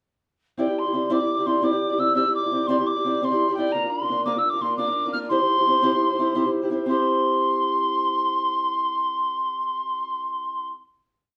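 Heard from a little further back in a studio with a wet, short reverb, this brief Celtic folk slip jig in 9/8 moves at a rollicking, lively 114 BPM in C mixolydian. A mellow, hollow tin whistle with soft attacks and gentle vibrato carries a motif-based melody in balanced phrases, while a boxy fingerpicked archtop guitar supports it with open chord shapes, driving strumming and the odd finger squeak, both entering at 0.6 seconds. The harmony moves from Cadd9 to Bb and back to C, and the piece settles on a final chord held from 6.9 seconds.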